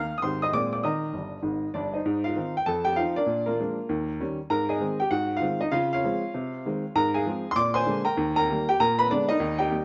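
A moderate echo-chamber reverb and a softened top end give this short cut from a longer piece a vintage air, with a woody, up-front upright piano tuned a touch below standard pitch. It is exuberant, playful stride jazz in Ab major at a brisk 196 BPM with a swung feel, the solo piano ranging from deep bass notes to bright upper registers with short sustain. A quick fill at 1.1 seconds leads into a new section at 2.1 seconds that moves through colourful dominant and seventh chords before closing on a Bb7b9.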